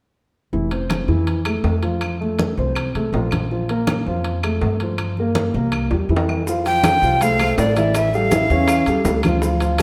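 Heard in a large, reverberant studio space, this danceable, sophisticated Afro-Cuban jazz excerpt in F major moves at 162 BPM, with a dark, mellow concert grand piano and a thumpy, gut-strung pizzicato upright bass up front, ringing metal-shell timbales, and low-tuned congas and woody claves in the background, until a drum fill at 5.9 seconds brings in tight, high-tuned bongos and grainy maracas at 6.5 seconds, and a breathy, bright jazz flute with vibrato and a crisp chiff takes the melody from 6.7 seconds.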